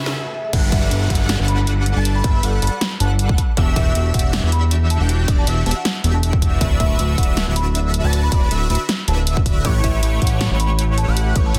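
A drum fill and an electronic riser and downlifter open this lush, playful future bass excerpt at 158 BPM in a half-time feel, as a bright, bold detuned-saw polysynth riff with phaser and chorus and a background marimba melody with digital delay sound together. After a brief break, the drop lands at 0.5 seconds with a punchy electronic kick, a dubstep kit with a huge snare, crash and hi-hat, and a fat, saturated, wave-folded analog bass up front, while an airy, dreamy lead with vibrato and portamento adds soft arpeggios in the background. Sidechain pumping breathes through the polysynth, marimba, lead and bass over chords moving from Gmaj7 through Em7 and D6 to A9, all in a dense, heavily limited mix with digital ambience.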